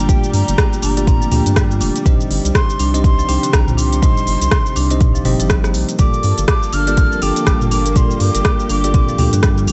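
Afro house with a warm, spiritual mood, cut from a longer piece, where a breathy, expressive jazz flute carries the melody through digital delay over bell-like electric piano stabs, marimba arpeggios from medium hard mallets, dark sul tasto strings sustaining chords in the background, and a round analog bass pumping against an up-front, deep electronic kick and a tape-toned afro-pop kit of smooth hats, rim click, shaker and toms, all moving through Gm7 and Cm in a dry, close sound with dulled highs.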